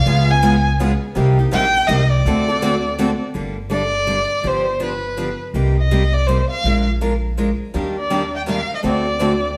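A live-in-one-room sound with a wet stone reverb frames this short, bittersweet and virtuosic slice of jazz manouche in G minor, swinging briskly at 164 BPM in 3/4. Up front, a bowed violin sings the melody with vibrato, portamento and a soft attack, while a bright, freshly strung steel-string guitar picks the accompaniment with audible finger squeak over a woody, thumpy pizzicato upright bass on gut strings. A boxy second swing guitar adds picked support, dropping out at 3.1 seconds and returning at 7.7 seconds on Ebmaj7 as the chords move toward D7.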